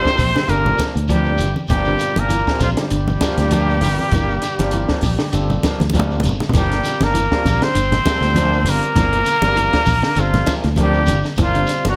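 A swung, mid-tempo afrobeat groove at 99 BPM in G dorian drives this intense, defiant clip, where a breathy, whispered trumpet with slapback echo leads over a raspy tenor saxophone, a very quiet clear trombone section that drops out at 5.9 seconds, a barky overdriven tine electric piano with tremolo, clean guitar arpeggios, twangy stabs from a guitar through a small old amp, a round fingered bass, damped congas, a grainy distant shekere and a dark compact cocktail kit whose fill at 5.8 seconds leads into the repeat of the section, all in a moderate large studio reverb.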